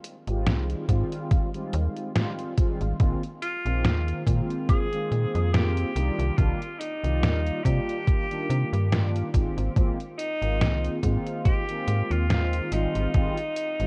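Vaporwave with a melancholic, nostalgic mood, this short excerpt from a longer piece moves at an unhurried, lightly swung pace over dark, cassette-tinged production and digital ambience. A detuned 8-bit drum machine supplies hi-hat and a fat snare, a thumpy electronic kick enters at 0.9 seconds, and both carry gritty 12-bit sampler texture in a small room, while a snappy FM bass with a metallic attack sits up front beneath mellow, chorused synth brass that evolves through rich extended chords with analog delay. At 3.4 seconds an edgy, punchy alto saxophone takes the solo melody with light vibrato, trailed by tape echo.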